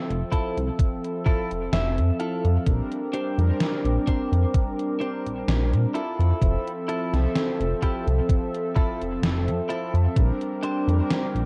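A chorused synth bass sits up front with a glossy, pulse-wave tone, anchoring this woozy, faded vaporwave excerpt at 64 BPM in F major, drifting between Fmaj7 and Bb69 over a thumpy electronic kick and a gated 80s digital drum machine whose overdriven hi-hat and snare carry gated reverb. Mellow synth brass supplies round, detuned accompaniment with a soft attack, chorus and dub echo, while a warbling tape-like pad holds dark, nostalgic chords in the background. A clean, picked electric guitar plays a scooped riff through analog chorus, a low-pass filter and dub echo, adding a fill from 1.3 to 2.7 seconds, all within an echo-heavy mix carrying a cassette-tape character.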